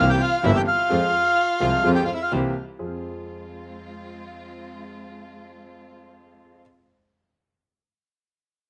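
A reedy, up-front bandoneon carries the melody with a slapback echo in this dramatic, sultry tango excerpt at 128 BPM in F harmonic minor, shadowed by a bowed violin second line with vibrato and portamento until both drop out at 2.3 s, while a mellow concert grand piano with audible action noise and deep bass accompanies throughout, a focused chamber string section adds echoed stabs, and a biting, earthy bowed double bass holds the low end until 3.0 s, all in a dry outdoor setting over a rubato feel.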